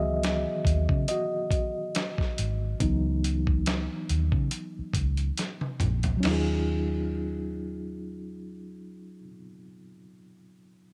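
Late-night and introspective, this slow R&B and neo-soul excerpt moves at 70 BPM in Eb minor with a gentle sixteenth-note swing, shifting from Dbm11 to Ebm11 at 6.2 seconds. Up front, a mellow, reedy electric piano with medium tremolo plays through its built-in speakers and takes the lead over the opening, while a dark, round, foam-muted fingered bass holds the low end. A gritty, compressed sampler-style drum kit with a thumpy kick and a small-room character plays a fill from 5.4 seconds before dropping out, all in a light reverb.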